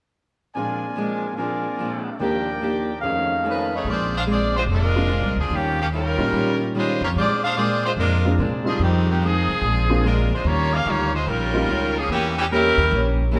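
Set in a moderate concert-hall reverb with some lossy compression artefacts, this energetic, brassy swing excerpt in Bb mixolydian moves at 146 BPM in 4/4. A picked steel-string acoustic guitar and an intimate grand piano with audible action noise and long sustain carry the accompaniment, while a clear, close-miked trumpet section with vibrato and a soft attack plays tight stabs until 3.9 seconds. From 3.5 seconds an edgy saxophone section with vibrato takes the melody up front, and a dark, woody pizzicato upright bass enters at 3.8 seconds beneath chords that include Bb9, Eb9 and Fm7.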